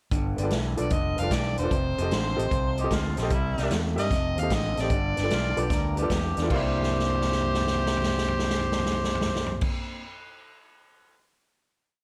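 Rollicking and laid-back, this short electric blues shuffle at 150 BPM in C mixolydian opens with a twangy, slightly broken-up electric guitar boogie figure, a round fingered bass and an up-front big-band drum kit with a boomy kick, joined at 0.4 seconds by a boxy baby grand piano playing off-beat rootless chords; a gritty overdriven harmonica states a motif-based melody with scooped notes from 0.8 seconds, a mellow, distant second harmonica adds blues licks from 2.1 seconds, and a drum fill carries the closing chord from 6.7 seconds under light reverb.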